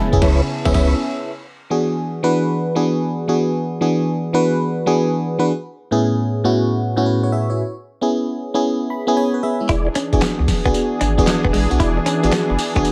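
Under a light reverb, this upbeat, flirty new jack swing snippet opens with a brief band accent: gritty, overdriven sampler-style drums with crash, handclaps, hi-hat, kick, snare and tambourine, a round, deep analog bass, a brassy detuned pad with chorus and tremolo, a clean direct-recorded electric guitar riff with lush chorus, and soft, flute-like tonewheel organ stabs swirling through a fast rotary speaker and tape echo in the background. Once the others drop out by 1.2 seconds, the glassy, bell-like FM electric piano carries the swung groove by itself, moving through minor-seventh, dominant and major-seventh chords. It plays a fill at 8.6 seconds before the full band returns at 9.7 seconds.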